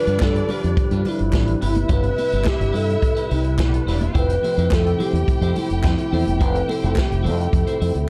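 Glamorous and joyful, this short disco cut at 106 BPM in C major sets a pure, hollow alto flute melody over lush bowed strings with expressive vibrato and portamento, a clean picked electric guitar with subtle chorus, a worn, slightly out-of-tune tine electric piano, and a fat, lightly overdriven tonewheel organ spinning through a fast rotary speaker, while a punchy envelope-filtered fingered bass and an up-front vintage kit with a rolled-off top drive the groove, joined by damped high-tuned congas and crisp group handclaps, all moving from G7 through Cmaj7/G to Fmaj7 in a dark studio reverb.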